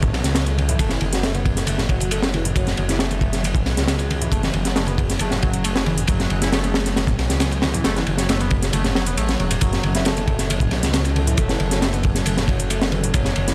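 Breakbeat in a gritty, raw mood, built on a crunchy, saturated drum kit with a punchy kick and high-tuned snare, a thick, menacing detuned saw bass held up front, and metallic electronic hi-hats and very quiet, soft-handed congas tucked beneath, all inside a small room. From 0.7 seconds a screaming, guitar-like overdriven synth lead carries the riff through distortion, phaser and tape echo, while a swirling phased analog pad pumps in the background. The kick drops out from 8.7 to 9.6 seconds, and at 11.2 seconds a breathy, flute-like synth lead with an old-record tone briefly appears.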